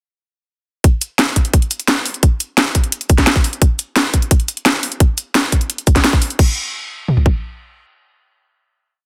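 A cracking, overdriven electronic snare sits up front in this short, futuristic and tense drum and bass piece at 173 BPM, along with bright hats, shaker and crash in a tight, technical kit with a small-room character. Alongside it, a second layered electronic kit drives a tight, up-front broken-beat kick with mid and floor toms through the drop from 0.8 seconds. The cymbals and snare stop at 6.5 seconds, and the kick and toms carry on into the final hit until 7.3 seconds, all under light reverb and a dense, heavily limited modern master.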